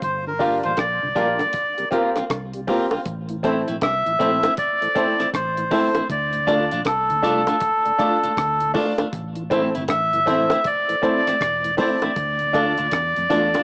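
This short cut from a longer roots reggae piece has a homespun cassette sound, like a home recording heard through a small speaker, set in a moderate studio ambience. At 79 BPM in 4/4 with a swung sixteenth-note feel, the mood is meditative and hypnotic, moving from Gm7 and C7sus4 into a longer section that rocks between Am and Dm from 3.1 seconds. A reedy, breathy melodica sits up front carrying the melody between A4 and E5, colored by tape echo and plate reverb. Beneath it, a muted fingered electric bass gives round, punchy low notes, and a deep drum kit with a tight kick, hi-hat and rim click keeps a dark, dry pulse. From about 0.4 seconds, a clean picked electric guitar with its own echo and plate reverb, a clear, woody, slightly detuned upright piano playing stabs, and tight, high-tuned bongos tucked in the background fill out the groove. A mellow, lightly overdriven tonewheel organ with key click and chorus vibrato hums very quietly underneath from 0.3 seconds.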